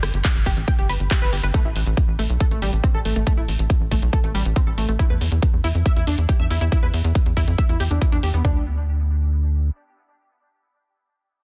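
A saturated, punchy sawtooth sequencer bass pumps against handclaps, metallic hi-hats and rim clicks from the opening moment of this bittersweet, driving uplifting trance fragment, joined almost at once by a punchy, up-front kick and toms. From 0.5 s a tight, detuned synth arpeggio with filter-plucked attacks adds chorus, dub echo and its own sidechain pumping. The drums and arpeggio drop away around 8.4 s as a new section begins, leaving the bass alone until 9.7 s in a dense, heavily limited and fairly dry modern mix.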